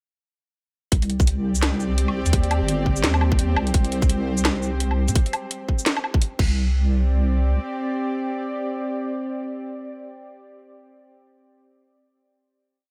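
A heavy, dark half-time drum and bass piece opens with a tight electronic kick, a sparse beat of cracking snare, metallic hats, shaker, low woodblock and crash re-recorded in a small room, and a deep, wobbling bass with chorus gliding through long notes up front, all within a digital ambience. A tense, string-like drone of detuned sawtooth with vibrato, reverb and sidechain pumping holds sustained chords over them, while a faint, flickering granular texture sustains a high note in the background. The drums drop out at 6.5 seconds, and the bowed-like drone carries the final hit with the bass until 7.6 seconds, then continues until 9.7 seconds.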